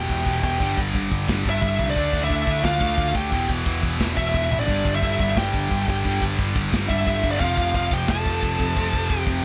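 Relentless and epic, this heavy metal excerpt moves in a half-time feel as a dark high-gain lead guitar carries the melody through digital delay over a second lead guitar line, while a double-tracked fuzz guitar and two scooped high-gain guitars grind out the riff in the background, a growly, overdriven picked bass punches underneath, and an up-front, polished studio drum kit with bright cymbals and a tight kick drives the piece, adding a drum fill at 4.3 seconds, all within light reverb.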